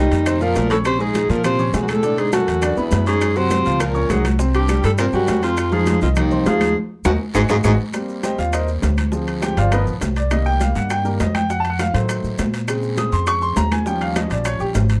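A punchy, forceful alto saxophone leads this lively, sophisticated Afro-Cuban jazz excerpt, its smooth top and vibrato up front in a jazz style. A breathy baritone saxophone with light vibrato carries a second line in the background, and both horns drop out at 7.7 seconds. After a drum fill and band accent, the warm baby grand piano takes a solo from 7.9 seconds, having already supplied natural-sounding accompaniment alongside a woody, dark pizzicato upright bass set up front. The percussion is layered: bright, high-tuned congas sit distant as if in a large room, ringing metal-shell timbales fill a small room, and round, low-tuned bongos played with soft hands stay very quiet beside woody, dry claves. A raspy guiro and grainy, mellow maracas tick along in the background, all within a dark production and moderate small-room reverb, with rich extended jazz chords shifting underneath.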